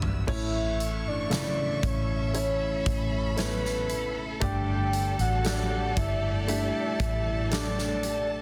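Emotional and hopeful, this slow pop ballad in straight 4/4 opens on a drum fill from a huge arena kit, its fat snare and punchy kick ringing in a big, natural room alongside crash cymbal, hi-hat and toms. A soft octave-layered synth lead carries the melody from 0.3 seconds, its round, full-bodied triangle-and-sine tone given a sub octave, vibrato, chorus and phaser. Beneath it, a baby grand piano with audible action noise and short sustain plays intimate accompaniment, while a studio string section holds expressive bowed chords higher up. A mellow, clean electric guitar adds compressed fingered arpeggios in the background, and a vintage foam-muted fingered bass anchors the low end with a dark, amped, round sound. The harmony moves from A to Gsus2 at 4.4 seconds in this short excerpt cut from a longer piece, set in light small-room ambience with a dense, heavily limited modern master.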